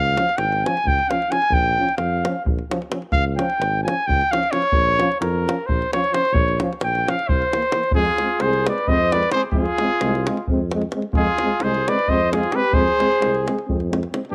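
Cut from a longer piece, this home recording on cassette sits in a moderate spring reverb that gives the band a roomy studio bloom. It is a fiery, virtuosic Balkan brass band number in 7/8 at 262 BPM counted in eighths, with a straight feel. Up front, a warm trumpet with light vibrato and a tape-tinged tone plays the lead in a classical style. It takes a solo over Db and Bbm chords until 7.9 s, and a C7 at 7.3 s turns the music toward F dorian sharp4, which arrives at 7.9 s. A mellow tuba with a smooth top carries the bass, and a tight, close and dry davul drives the percussion. In the background, a soft-attack French horn and a distant euphonium hold the accompaniment, and at 8.0 s a second trumpet with a gentle attack enters on a supporting line.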